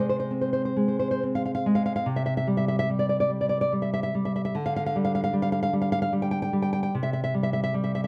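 In a lilting three-beat metre, the pulse stretches and relaxes freely in a rubato feel, giving this short romantic passage for solo classical guitar an unhurried, sunny character. The nylon-string guitar plays alone throughout, thumb-plucked and sitting up front, with a warm acoustic tone. Its range spans from low bass notes up into the upper register, and the harmony moves from a shaded F minor colour over a C bass into open C sonorities and a G chord over D. Close, detailed microphones capture the intimacy of each plucked note, while light reverb adds a gentle halo of space. Cut from a longer piece, the fragment lasts just over 8 seconds.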